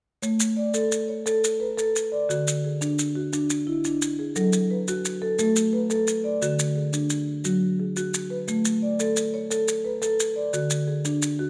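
Warm and hypnotic, this short excerpt from a longer piece draws on southern African traditional music, built around an mbira-style interlocking cycle in 12/8 at 116 BPM, counted in dotted quarters, with a straight feel in A major. A marimba played with soft mallets carries the arpeggios from 0.2 seconds, its rosewood bars giving a woody, round and airy tone that sits up front. Maracas supply the percussion alongside it from the same moment, grainy and close, also placed near the listener. The harmony circles through A, D and F sharp minor, colored by suspended chords such as Asus24 and F#sus24 before settling back on A and D. A moderate recital hall reverb surrounds the detailed, close-miked sound, lending the cycle a gentle sense of space.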